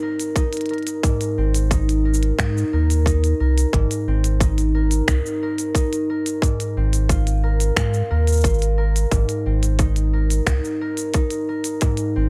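A dry, close-sounding fragment of playful, delicate folktronica at 89 BPM in Ab major: a ringing, fingerpicked concert harp spins arpeggios over an Abadd9 chord, roughened with vintage 12-bit sampler grit and trailed by delay, while a minimal click kit of finger snaps, clicky hi-hats and shaker ticks alongside a tight, overdriven electronic kick sitting up front, and from 1.4 s a deep, round sine sub bass with tube saturation fills in underneath.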